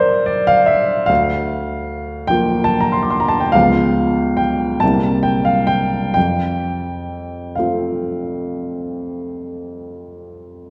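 Dreamy and serene, this short excerpt of a romantic classical nocturne for solo upright piano drifts in 12/8 at 42-51 BPM with free rubato in F major, its intimate, woody tone, audible action noise and long sustain placed up front in a wet scoring-stage reverb as the harmony moves through Db7 and C7 before settling on F at 6.2 seconds.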